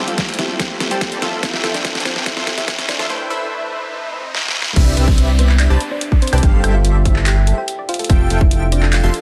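Future bass at 144 BPM in a bittersweet, dreamy half-time groove: a very quiet breathy pad holds chords until 3.1 s while a fat, detuned analog bass and punchy supersaw stabs pump under sidechain, a tine-like 12-bit-gritty pluck carries the melody over a soft round arpeggio, a layered dubstep kit with deep snare and a hard-clipped kick sits up front, a background riser swells into the drop at 4.8 s, where an airy chorused lead adds high arpeggios over chords moving from G9sus4 through Fmaj9, Am9 and Cmaj9, all in a dense, heavily limited mix.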